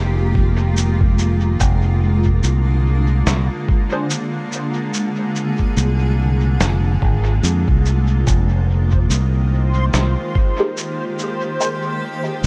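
A direct, up-front fingered electric bass anchors this deep, meditative section of a longer ambient dub piece, set at 72 BPM in 4/4 with a swung sixteenth-note feel in F dorian. Behind it, a cloudy, evolving granular pad holds sustained chords with a slow attack, long release and its own reverb, moving from Fm11 to Bb7/F and back to Fm11 at 8.3 seconds. A muffled, pitched-down sampler kick with a thumpy, tape-tinged weight sits up front, joined by a quieter compressed cabasa and medium-tuned snare carrying dub echo and a small-room ambience. A muted, dark dub chord stab built from detuned sawtooth and square waves with a sub octave flickers in briefly at 3.9 seconds and returns near the close, colored by filter sweep, phaser, analog chorus and echo. From 8.6 seconds a reversed, dreamy triangle-wave texture swells softly on a high C, adding a bright, detuned shimmer under a digital ambience.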